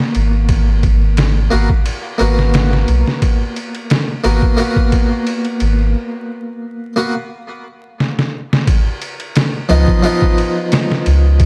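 A close-miked harpsichord and a compressed, sampler-style trip hop drum kit open this hypnotic, dark excerpt together. The harpsichord's bright, plucked octave strings carry tremolo and tape echo over a thumpy kick, a medium-tuned snare and a ride cymbal, the kit sounding pitched down and gritty. A deep, round, soft sub bass with a triangle and square wave tone and a fast attack comes in at 0.2 seconds and sits up front alongside them. A break arrives at 5.9 seconds, and a drum fill leads into a new section at 8.7 seconds, where the harmony moves from a G#m7 to a C#7. The sound is dry, with the grit of hardware and a layer of vinyl crackle over a lightly swung groove.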